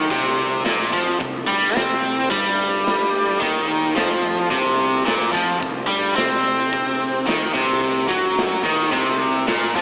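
A cranked stack guitar leads this raunchy, swaggering blues rock and southern rock power-trio excerpt, its bright, overdriven, double-tracked riff sitting up front with a slapback echo. Beneath it, a fuzzed, picked electric bass, direct and amped and overdriven, holds the low end from the background. A raw garage drum kit joins at 0.1 s with hi-hat, a punchy kick and a medium-tuned snare, its acoustic sound saturated and gritty in a pumping stone room. The trio rides a single C5 chord in a straight 4/4 feel, tuned to A4 = 442 Hz. A wet concert-hall reverb gives the mix a big arena scale, yet the overall sound also carries the tint of AM radio.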